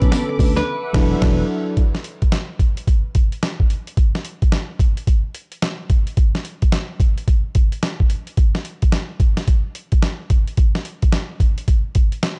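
Swung 16ths at 109 BPM drive this punchy, confident new jack swing cut, where a gritty, pitched-down boom bap sampler kit with a thumpy kick and tambourine sits up front under a twangy clean guitar melody, a quieter picked guitar riff, round electric-piano-like synth keys, a detuned sawtooth pad and a round fretless bass over Bm9 and E9sus4, with the kick muted from 0.7 s until the drums carry on alone from 1.8 s to 12.4 s in a dry, dark mix.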